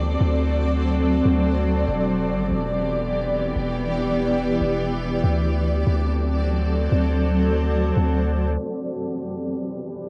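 Lo-fi and softened, this short clip cut from a longer piece sounds like a home cassette recording, with a low-pass filter dulling its top end and a light reverb around it. It is melancholic, hazy atmospheric cloud-rap in a half-time feel. A bright, up-front granular pad carries the sustained chords, its detuned sine and sawtooth layers blurred and evolving through a slow attack, long release and its own built-in reverb. Beneath it, a deep, mellow 808-style bass holds long, sine-like notes that hit with a fast attack and then decay, dropping out at 8.6 seconds. The harmony moves between D7 and Em7, and from 8.6 seconds the pad continues alone under a filter sweep until the clip ends at 10.1 seconds.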